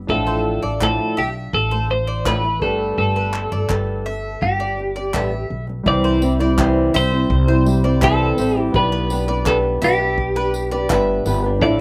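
Sunny and carefree, this acoustic pop excerpt moves at 83 BPM in 4/4 in C major, with a dry, open-air sound. A bright, twangy twelve-string electric guitar carries the melody up front with slapback echo, over a fingerpicked flamenco guitar with audible finger squeak, a woody pizzicato upright bass, and an unplugged kit of punchy kick, handclaps and tambourine played with bundle sticks. A clear concert grand piano with audible action noise and its own slapback echo sits in the background, while a picked mandolin adds double-string arpeggios from 0.3 seconds, as the chords move from Dmadd9/A and Gadd9 to C at 5.9 seconds and then G/B.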